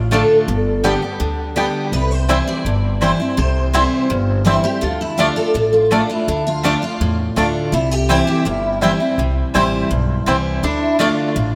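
A straight 4/4 pulse drives this rustic, lonesome bluegrass excerpt. A full-bodied picked steel-string guitar carries the melody through ensemble chorus and tape echo, while a second, up-front guitar picks out accompaniment over a thumpy, woody upright bass, a very quiet twangy banjo line and round mandolin stabs touched with tape echo. The chords move from G to C to Dm, and a metallic, nasal lap resonator guitar slides in with a brief second line at 10.6 s, all bathed in a dreamy plate reverb.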